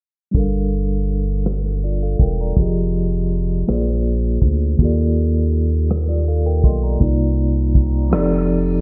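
A rubbery, hollow square-wave bass sits up front in this yearning, late-night slow R&B in six-eight, cut from a longer piece. A clean tine electric piano, also up front, carries the chords with a medium tremolo through a combo amp, moving from Gm9 through Ebmaj9#11 to F13. A dark, smooth soul drum kit with a tight kick, hi-hat and rim click is treated with gated reverb, all set in a small room with bright 1980s-style digital production and a filter sweep running from 0.3 to 8.8 seconds.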